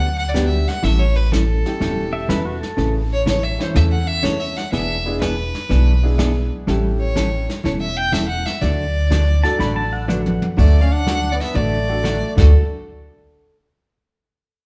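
Western swing country at 123 BPM in D major, swinging and cheerful. The rich, focused fiddle carries the melody with light vibrato over a woody, thumpy upright bass up front, dark picked hollow-body jazz guitar, a clear, slightly detuned upright piano and a vintage brush drum kit with a rolled-off top, while clean pedal steel slides in briefly at 2.1 seconds and again near 9.4 seconds. After a drum fill, a close-miked flugelhorn takes a jazzy solo line with scooped notes from 10.6 seconds, all heard together as a band playing live in a stone room with wet reverb.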